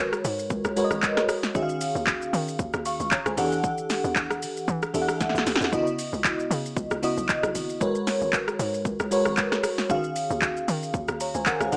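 A lightly swung sixteenth-note groove in 4/4 drives this late-night, deep amapiano piece, its overdriven deep house kit up front with a deep kick, punchy snare, metallic hats, handclaps, rim clicks and shaker, breaking into a short drum fill at 5.2 seconds. Beneath it, a hollow, bouncy log drum bass gives fast-attack, decaying hits, while a crystalline FM electric piano, sparkling with chorus and tremolo, sits up front accompanying through minor eleventh chords. Light reverb and a small-speaker character frame this brief cut from a longer track.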